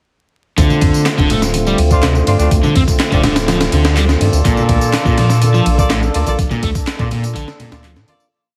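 Breakbeat at 124 BPM in D minor, funky and energetic, where a gritty looped break with a thumpy kick and high-tuned snare sits under an overdriven analog machine layer of handclaps, ride and tambourine and very quiet bright congas, while a thick saturated sub bass skips through syncopated lines, a crunchy overdriven guitar repeats its riff, a fat tonewheel organ holds sustained Dm7 and Bbmaj7 chords through chorus vibrato, slow rotary speaker and sidechain pumping, mellow jazz-style horn stabs with 12-bit grit and dub echo enter at 1.9 seconds, and the whole piece carries a heavily compressed radio sound with vinyl crackle before fading out from 5.7 seconds.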